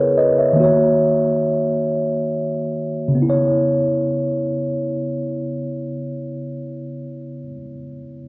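In a straight 6/8 at 42-51 BPM counted in dotted quarters, this sultry, late-night R&B fragment in C# dorian slows down over its first 3.2 seconds. A mellow, clean tine electric piano sits up front as the sole accompaniment from 0.0 to 8.3 seconds, its slapback echo and built-in speaker tone framing C#m7 and D#m7 chords before settling back on C#m7 at 3.2 seconds. Heard as a live gig through the venue's PA, the sound carries a light recital-hall reverb.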